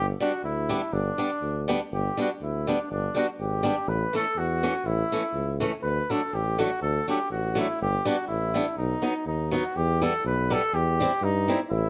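A mellow trumpet carries the melody in this bouncy, festive alpine folk excerpt, played by an alpine dance band at 123 BPM in a swung 2/4 in G major, its tone punchy yet slightly distant and roomy. A clear tuba anchors the bass in classical style, while a picked acoustic guitar with bright, fresh strings and a boxy edge supplies swing-style accompaniment, all three sitting up front. Close, detailed microphones and light reverb frame the trio as the harmony moves from G through A, D and B before turning to E minor near 9.8 seconds.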